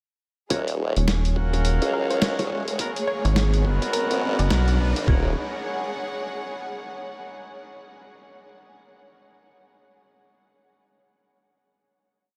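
A dreamy, reverb-soaked mix opens this short, playful and swaggering glitch hop piece in Eb minor at 105 BPM, swung on the sixteenths, where a build from 0.5 seconds moves from Ebm7 to Abm7 before a rootless Ebm7 final chord rings out from 5.1 seconds. Gritty, tape-warm, pitched-down boom bap sampler drums with a thumpy kick, toms and a medium-tuned snare drive a formant-sweep wobble bass with changing wobble speed and a rubbery, bouncy square bass playing chopped phrases meant to answer it. Distant jazz-style horn stabs in rootless voicings, a dark bowed string section with light vibrato that holds until 7.3 seconds, a very quiet woody wave-folded pluck with short answering phrases and a background electronic riser fill out the build.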